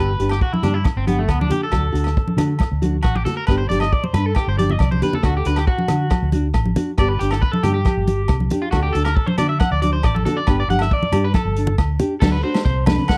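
A dry, close studio sound with a 1970s feel frames this sunny, carefree highlife guitar band passage, cut from a longer piece and moving at 137 BPM in a straight 4/4 in D mixolydian. A clean electric guitar solo runs through the opening 12.2 seconds, while an electric guitar at the edge of break-up picks twangy, slightly broken-up arpeggios colored by subtle chorus and slapback echo. Underneath, a full-bodied nylon-string guitar fingerpicks the accompaniment, and a foam-muted fingered electric bass gives a round, punchy low end. A vintage drum kit with dark cymbals, a medium-tuned snare, rim clicks and a punchy kick enters at 0.2 seconds and drops in a short fill near 4.8 seconds. Agogo bells ring softly in the background, and hard-handed congas join at 0.5 seconds as the harmony sways between G and D.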